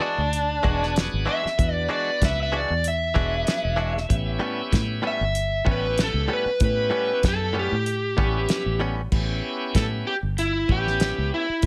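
An overdriven slide guitar solos through the first 9.1 seconds of this rollicking, laid-back soul blues excerpt at 96 BPM in A mixolydian, over a shouting tonewheel organ with key click and slow rotary speaker, twangy clean guitar stabs that stop at 9.0 seconds, a round foam-muted fingered bass, and a cloth-damped, thuddy drum kit with a fat snare and dark cymbals, moving from E9 to A9.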